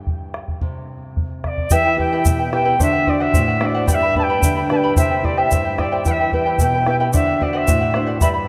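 Wistful yet festive, this short cut from a longer Andean folk piece moves at 111 BPM in a straight 2/4, centred on E minor. A fingerpicked nylon-string guitar, small-bodied and up front, opens the music with the round thump of the bombo arriving almost at once. At 1.4 seconds the cane quena takes the melody with a reedy, airy tone, its crisp chiff on each attack and a straight, unwavering sound in the upper register. From 1.7 seconds the charango adds a shimmering fingerpicked layer from its doubled strings, while a grainy tube shaker sits close and dry beneath it. The harmony cycles through Em, D7, G and C before returning to Em and D7, and the whole ensemble is bathed in a cathedral-like reverb that makes the space feel vast and echoing.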